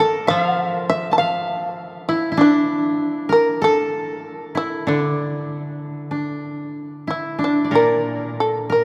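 A long cathedral reverb surrounds this short, meditative excerpt of Japanese traditional chamber music, which unfolds in a free, rubato 4/4 at roughly 46-51 BPM in D hirajoshi. Up front, a bright, buzzing fretless shamisen carries the melody with percussive plectrum attacks, while a woody, fingerpicked koto shares the same upper register as a second line. A second koto, dry and lower in the mix, enters at 0.3 s with a low accompaniment, giving the 8.8-second passage an austere, spacious calm.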